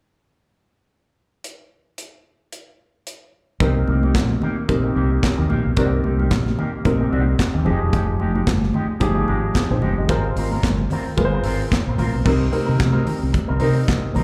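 Driving and sultry, this disco excerpt opens with a modern drum kit alone, its bright cymbals, handclaps, medium-tuned snare and tight kick up front under a light swing. At 3.6 seconds a round, punchy fingered bass, a grand piano with slapback echo, a dark, clean envelope-filtered guitar with subtle chorus, and high-tuned congas in the background all join over chords moving from Cm7 through Fm9 and Ab69. The whole groove sounds like a live gig heard through a club PA, bathed in reverb.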